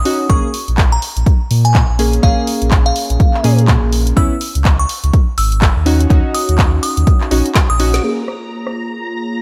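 A glassy FM synth bell with chorus and delay opens this moody, smooth deep house excerpt in Bb minor at 124 BPM, over a deep, full sub bass with octave that sits up front with tube saturation and sidechain pumping. Round, detuned analog keys play filtered stabs with chorus and delay, while a punchy electronic kick drives a swung kit of handclaps, dark hi-hats, a rim click and a woody snare, closing the first part with a drum fill from 7.6 s. At 8.0 s a hollow, flute-like soft pad takes over the sustained chords, joined by a shimmering vintage string machine of violins holding a high Bb as a filter sweeps across the drums.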